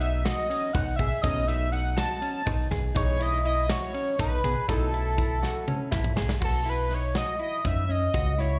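Progressive instrumental band music in an uneven 7/8 meter, intricate and bright, heard as a live gig through a club PA with small-room reverb, cut from a longer piece. A bold, retro octave-doubled synth lead carries the melody up front, its sawtooth-and-triangle tone shaped by a filter sweep, vibrato, chorus, phaser and slapback echo, over a round, dark picked dub bass and a punchy, mid-forward acoustic drum kit. A mellow, clean fingered electric guitar plays arpeggios colored by spring reverb, while a brilliant grand piano sits in the background until 6.4 seconds, when a drum fill hands off to a new section.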